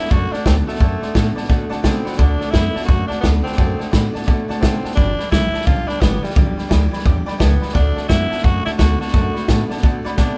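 Rowdy and rollicking, this short rockabilly excerpt swings hard at 173 BPM in 4/4, riding a D7 to G7 and back to D7 progression in D mixolydian. A growling tenor saxophone carries the melody as a raspy, gritty solo voice with vibrato and a smooth top, while a bright, brilliant upright piano fills in high accompaniment. Behind them sit a full-bodied, picked dreadnought acoustic guitar and a dark electric guitar at the edge of break-up playing a low riff. The woody, thumpy pizzicato upright bass and a vintage acoustic drum kit with a punchy kick and medium-tuned snare set the pulse, the kit sitting up front. The band plays live in one room with light reverb, and a drum fill lands at 10.2 seconds just before the cut.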